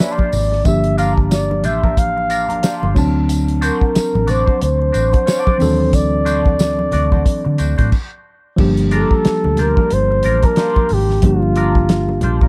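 Silky and bittersweet, this short cut from a lush 1970s-style soul piece sets a breathy, whispered flugelhorn melody up front over mellow, slightly out-of-tune tine electric piano, a twangy guitar riff with wah and spring reverb, a punchy, fat-snared soul drum kit, a round, foam-muted bass entering at 0.3 seconds, soft-handed congas, and a jingly tambourine that drops out at 7.8 seconds, all in a dry, close studio sound with a brief stop before the Gm7 returns at 8.6 seconds.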